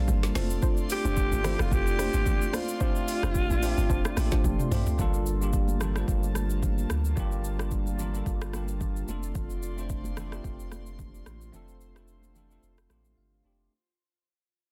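Dense and heavily limited with little reverb, this modern amapiano recording is cut from a longer piece and has a soulful, hypnotic mood and a swung sixteenth-note feel. Overdriven electronic drums sit up front, with a deep kick, woody snare and metallic hats alongside shaker, rim click and toms, while very quiet, high-tuned congas add a close, dry touch of soft hands. In the opening drop, a dark, percussive log drum bass carries the low end beneath a bell-like tine electric piano, an airy pad pumping with sidechain, and gentle chorused plucks with digital delay in the background. A breathy, raspy alto saxophone plays a short solo line with vibrato and delay before a drum fill leads into the second section at 5.0 seconds. There a round sine sub bass takes over the low end as the passage fades out, the pad sustaining and the piano accompanying over the chords until an electric piano fill at 12.6 seconds and a brief break close it.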